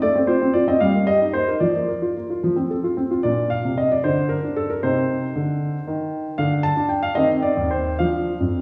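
A classical-period piano sonatina in B-flat major, this short passage cut from a longer piece moves in 6/8 at 75 beats per minute, counted in dotted quarters, with a flexible, rubato feel. The mood is playful and elegant, carried entirely by a solo grand piano with a warm, smooth, vintage tone that sits up front, spanning from E-flat in the low register up to A5. The opening section, through 3.2 seconds, moves through a chain of inverted chords, F over A, E-flat over G and B-flat over F, before settling on F. The second section, from 3.2 to 8.6 seconds, opens on B-flat and brings moments of unharmonized line alongside a C minor chord with an added ninth, then C minor over E-flat and D minor over F. A wet recital hall reverb with a 1.7-second decay places the listener further back in the room, lending the performance a spacious, resonant glow.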